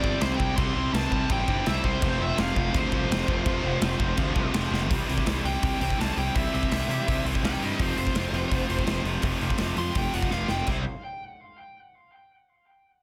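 A dense, heavily limited modern master with little reverb puts a big, punchy rock drum kit up front, its bright cymbals and medium-tuned snare driving a rowdy, rebellious punk rock fragment in C major at 166 BPM in a straight 4/4. A fuzzy, overdriven picked bass punches beneath a biting overdriven guitar and a bright distorted guitar playing picked riffs in the background, while a very quiet, double-tracked high-gain guitar adds weight only until 4.9 seconds. A dark, nasal lead guitar with a parked wah, overdrive and tape echo carries the melody and takes a solo from 4.9 to 10.7 seconds, with drum fills marking each section change as the chords move between C and F.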